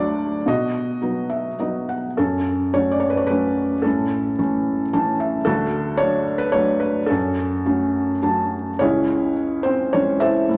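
A felt-muted upright piano plays alone throughout this short, cool and bittersweet classical excerpt, its soft, mellow tone sitting up front and intimate, with the natural action noise of the instrument clearly audible. In F# minor at 108 BPM in 3/4 with a rubato feel, it moves through chords such as B, F#m, A and D across a range from C#2 to A5, adding brief fills between phrases and shifting to a new section at 8.8 seconds that opens on C#m. A recital hall reverb with a 1.6-second tail lends a wet sense of space, while vinyl crackle adds an aged patina to this fragment of a longer piece.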